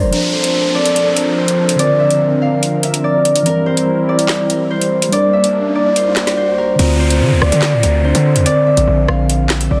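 A ringing, fingerpicked concert harp carries the melody up front over a mellow, clean tine electric piano and a smooth, detuned sawtooth pad with chorus, opening this cold, tense half-time drill excerpt. A produced electronic drill kit with a woody snare, metallic hi-hats, handclaps and rim clicks plays alongside electronic downlifter and riser effects, with a riser building from 4.8 to 6.8 seconds. At 6.8 seconds the pad stops and a punchy, heavy 808-style bass returns up front, its sine tone layered with noise and its fast attack decaying, all set in a digital ambience with a dense, heavily limited modern master.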